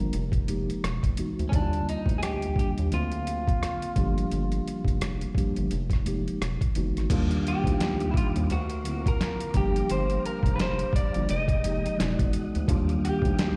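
Heard through a venue's PA with a recital-hall reverb, this smooth neo-soul R&B excerpt sets a slightly broken-up electric guitar melody, played through a small old amp with spring reverb and slapback echo, over a mellow tine electric piano, a deep, round analog bass and a gritty, pitched-down boom bap sampler-style drum kit with a thumpy kick, with a tonewheel organ entering in the background at 7.1 seconds to hold sustained chords through a slow rotary speaker.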